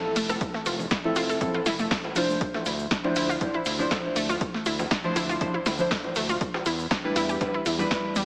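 Deep house with a deep, warm mood, built on up-front, dark chord stabs with chorus, phaser and sidechain pumping, moving through Fmaj7, Dm9 and Em7, over a bright detuned analog pluck arpeggio, a round, evolving analog bass, a punchy analog drum machine with a punchy snare, a gritty sampler-style soul kit tucked far underneath, an electronic kick, very quiet overdriven bongos and congas, and a grainy egg shaker sitting distant in the background, all set in an echo chamber reverb with a heavily compressed, small-speaker radio sound.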